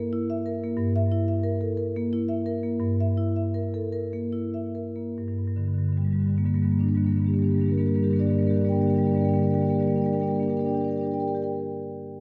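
A long church reverb, ringing for about 2.6 seconds, surrounds this contemporary classical piece for solo marimba in G minor. Its reflective, flowing mood comes from a mellow, round and full tone struck with soft mallets across a range from G2 to G5. In a rubato 3/4 moving between 70 and 95 BPM, the opening slows down over a Gm6 chord before settling onto G minor at 5.2 seconds, in this passage cut from a longer piece.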